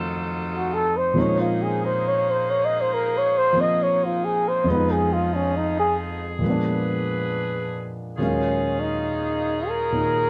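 A slow swung 4/4 at 68 BPM carries this melancholic, wistful jazz ballad fragment in Bb minor, where a dark, mellow concert grand piano with audible action noise and deep bass accompanies, a bright, tight saxophone section holds sustained chords with light vibrato, and a breathy, whispered flugelhorn with a soft attack and scooped notes enters at 0.6 seconds to carry the melody as an intimate solo until 8.2 seconds, captured with close, detailed microphones and light reverb.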